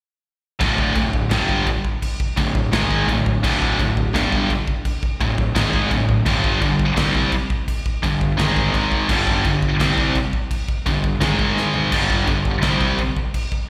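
A steady, straight 4/4 pulse drives this epic, heavy metal excerpt, cut from a longer piece and heard as a live gig through the venue's PA with recital hall reverb. Two bright, picked high-gain guitars play the riff from 0.6 seconds, one scooped and up front, the other sitting in the background, both carrying distortion and a slapback echo. Beneath them a fuzz-laden picked electric bass growls with overdrive, sounding direct and amped. The modern studio drum kit is acoustic, airy and polished, placed up front with bright cymbals, a medium-tuned snare, a punchy kick, toms and crash cymbal. A short drum fill at 11.6 seconds leads toward the close, and the drums carry on alone until 13.7 seconds. The chords move from D5 to G5 and then alternate between G#5 and G5.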